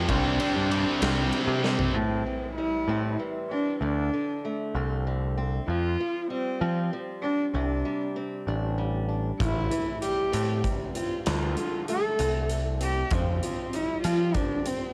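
Quiet-loud alternative rock in A minor, this dark, angsty piece moves at 64 BPM in a slow 6/8, taken from a longer work and captured as a home recording on cassette with light reverb. It opens with a heavy burst in which two electric guitars, one overdriven and set back in the mix, the other scooped and high-gain, play a riff over a huge arena drum kit with bright cymbals and a punchy kick, and both guitars stop at 1.9 seconds after a drum fill. From there the music drops into half time, and a picked steel-string acoustic guitar enters with dusky arpeggios, finger squeaks audible beneath its analog delay. Throughout, a close, intimate cello carries the melody up front, played sul tasto with vibrato, a soft attack and an airy bow, while a growling, overdriven electric bass sits prominently underneath. The drums return at 9.4 seconds as the chords cycle through Csus2, Am7, D5 and Fsus2, with Dm7 appearing on the second pass.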